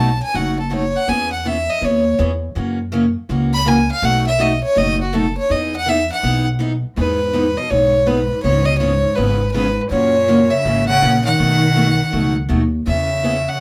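Swinging and playful, this western swing country excerpt moves at 163 BPM in E major with a swung eighth-note feel. An up-front, nasal fiddle carries the melody with light vibrato and an airy bow, taking a solo through the first 7.0 seconds. Beneath it, a bright, boxy picked steel-string acoustic guitar with fresh strings supplies the accompaniment, while a woody, thumpy upright bass on gut strings holds the low end with plucked notes. At 7.0 seconds a distant, focused cello enters with a second line, bowed with vibrato, as the harmony moves through chords such as C#m7, F#7 and B7 before settling on E6. The band sounds as if playing live together in one room, with a short, wet studio ambience around them.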